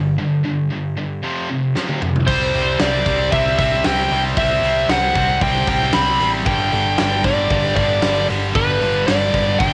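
Hard rock at 115 BPM in a straight 4/4, energetic and anthemic, this short cut from a longer piece opens with two bright, distorted guitars in the background playing a riff over G5 and F5 power chords, supported by a dark, round hollow-body bass, with a break from 0.2 seconds and a drum fill arriving at 1.8 seconds. At 2.3 seconds the music shifts to C as an up-front, bluesy lead guitar carries the melody with a warm, distorted tone, joined by a very quiet, double-tracked semi-hollow guitar, while the big, natural drum kit drives things with a punchy kick, fat snare and bright cymbals. The home cassette recording sounds dry, with a tape tint on the distorted guitars and drums, before the harmony returns to G5 at 6.5 seconds.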